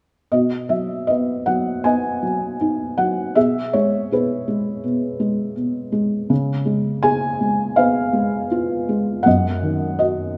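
A felt-muted upright piano carries this short solo passage, its thick felt giving the notes a soft, dark and intimate quality, with the action noise audible and the instrument placed up front. The music is lyrical classical piano in B major, moving at 81 BPM in 4/4 with a rubato feel that keeps the pulse flexible and the mood calm and tender. The piano plays from 0.3 to 10.4 seconds, spanning F#2 to G#5, as the harmony moves from B through E6/B and C#7 before settling on D#m/F# at 9.3 seconds. A moderate concert hall reverb with a 2.3-second decay surrounds the mellow tone. The fragment is cut from a longer piece and forms a single section.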